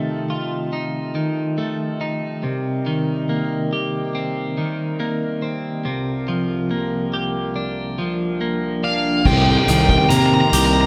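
In a straight, unhurried 4/4, this brooding, cathartic post-rock passage opens on a reedy, breathing pedal harmonium holding mellow chords beneath a clean, compressed twelve-string electric guitar whose picked arpeggios shimmer with harmonic tremolo. A dark, smooth overdriven lead guitar enters high at 8.8 seconds, and at 9.3 seconds the band lands together: a round, punchy fuzz bass and a soft-mallet drum kit with a boomy kick, hi-hat and dark crash cymbals. The group sounds like it is playing live in one room with moderate studio reverb, and the clip is cut from a longer piece.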